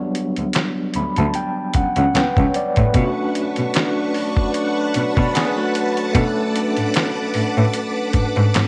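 A lightly reverberant mix puts three parts up front in this sultry, introspective neo-soul R&B excerpt with a gently swung sixteenth feel: a barky, overdriven tine electric piano with fast tremolo, a compressed soul sampler-style drum kit with thumpy kick, fat snare, hi-hat and handclaps, and a biting, nasal bowed cello carrying the bass line. The electric piano plays a fill in the opening seconds over a rootless Em9. The harmony then moves to Bm9 at 2.9 seconds, where shimmering vintage string-machine violins with ensemble chorus enter along with a mellow, punchy trombone section playing stabs in the background, and a dark, slightly broken-up picked electric guitar through a small old amp adds a brief second line from 5.2 seconds.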